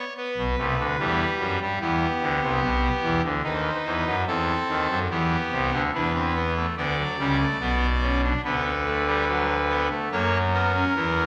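A brassy, bright pipe organ on its trumpet stop, with audible chiff and up-front baroque voicing, plays alone through this contemplative, solemn baroque-style three-part fugue in E minor at 72 BPM in a straight 4/4, moving from E minor through B7 and B minor toward F#7 across an 11.3-second section cut from a longer piece and set in a wet recital-hall reverb.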